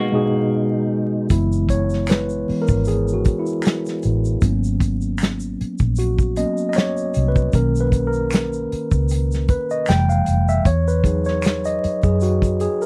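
This R&B and neo-soul excerpt moves at a relaxed 77 BPM in 4/4 with a light sixteenth-note swing, soulful and unhurried. It opens with a brief break, where a mellow tine electric piano sits with a semi-hollow guitar, clean and picked through a lush chorus, and a tonewheel organ holding sustained chords with chorus vibrato, key click and a slow rotary speaker. At 1.3 seconds the guitar and organ have dropped out, and a foam-muted fingered bass, dark and round, enters with an acoustic drum kit played with bundle sticks, its punchy kick and medium-tuned snare kept up front beside hi-hat. An egg shaker with finger snaps and group handclaps adds a faint, band-limited vintage layer, while the clean, direct electric piano takes a solo over chords moving from F#9sus4 through G#m11 and Bmaj9 to Fmaj9 and Emaj9. The sound is dry and close, in the manner of a 1970s studio, with a small-room feel on the drums and a veil of vinyl crackle.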